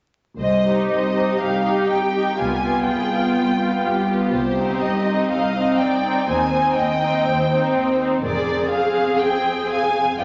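Classical and dramatic, this stormy passage from a fast romantic orchestral movement moves at 123 BPM in 4/4 and C minor, with a rubato feel that lets the phrasing breathe. The first violins carry the melody with a lush, vibrato-rich tone that sounds distant yet sits up front, while the second violins add a smooth second line. The violas, clear and focused, join the accompaniment at 0.7 seconds, just after the other strings enter at 0.4 seconds. Beneath them, cellos and a chamber-sized double bass section share the bass with a bowed, smooth tone. The harmony turns from C minor through a tense G7b9 over C and back before settling onto a half-diminished chord over F, all bathed in a reverberant recital hall with vinyl crackle and a softened, dulled top end.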